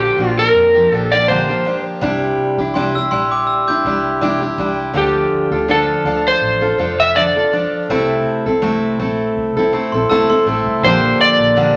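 Reflective and tender, this pop piece in D minor moves at 82 BPM with a light swing, drifting through Bb6, Cadd9, Dm and Am chords in a lush, reverberant studio space. An up-front, slightly broken-up electric slide guitar, played with fingerpicks, carries the melody over a full-bodied, picked jumbo acoustic guitar with fresh strings and audible finger squeak, while a dark, round, foam-muted vintage electric bass sits low in the mix. A bright, bell-like glockenspiel struck with hard plastic mallets adds a sparkling second line from 2.7 to 4.7 seconds and again from 9.9 to 10.8 seconds, within a passage cut from a longer piece.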